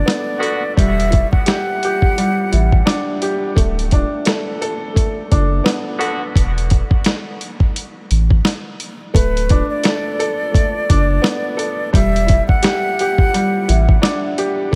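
A breathy, reedy concert flute with vibrato and a diffuse ambient delay carries the melody at the start and returns at 9.1 seconds, floating over this confident boom-bap hip-hop groove at 86 BPM with a swung 16th feel. A gritty, compressed sampler-style drum kit with a thumpy kick sits up front beside a woody, slightly detuned upright piano playing worn D6 and Em9 chords, while a deep, round dub sub bass holds down the low end. Punchy vintage horn stabs, also bathed in delay, appear briefly in the background, and the whole piece has a light reverb.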